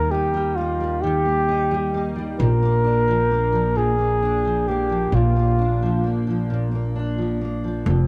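A mellow flugelhorn carries the melody up front, played jazz style with a soft attack, light vibrato and scooped notes, set in plate reverb and tape echo with a cassette tape character. This heartfelt, tender pop piece moves slowly at 44 BPM in dotted quarters, in a straight 6/8 feel, tuned to A4 = 441 Hz. Beneath it, a dark, double-tracked dreadnought steel-string acoustic guitar is fingerpicked as accompaniment, also with a cassette tape quality. An upright bass played pizzicato adds a woody, warm low end with its steel strings, sitting up front alongside the other parts. The harmony moves from Eb to Bb at 2.4 seconds, and the flugelhorn falls away at 6.2 seconds while guitar and bass continue to 8.1 seconds in this home-recorded cassette fragment cut from a longer piece, with light reverb.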